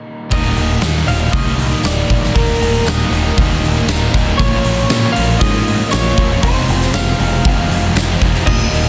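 A big, polished arena drum kit with bright cymbals and a punchy kick leads this hazy, wistful shoegaze and dream pop excerpt at 118 BPM in Eb major, under a growling overdriven picked bass, a dark, very quiet fuzz guitar, a double-tracked overdriven guitar and a hollow-body overdriven guitar with reverse reverb in the background, a lo-fi, slightly broken-up lead guitar with analog delay carrying the melody, and a lush, very quiet string machine with phaser and ensemble chorus sustaining chords that move from Eb to Bbm7 at 4.4 seconds, while a jingly, band-limited tambourine sits faintly between 0.8 and 8.1 seconds in a dense, heavily limited modern mix.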